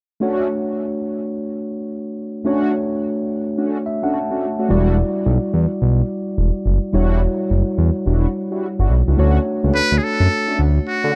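This flirty, bouncy R&B fragment opens at 0.2 seconds with a mellow tine electric piano laying down clean, direct chords alongside stabs from a detuned synth brass patch treated with chorus and tape echo. The tempo sits at 107 BPM in D major, with a loose sixteenth-note swing that gives the groove its easy strut as the harmony moves from Dmaj7 to Em9. The electric piano slips in a short fill just before a smooth, warm synth bass arrives at 4.7 seconds, sitting up front and anchoring the low end. Near the close, at 9.8 seconds, a trumpet with a metal mute steps forward for a brief jazz-style solo line, its tone buzzy, thin and breathy. The whole piece has the dry, close feel of a 1970s studio session, with little reverb around the parts.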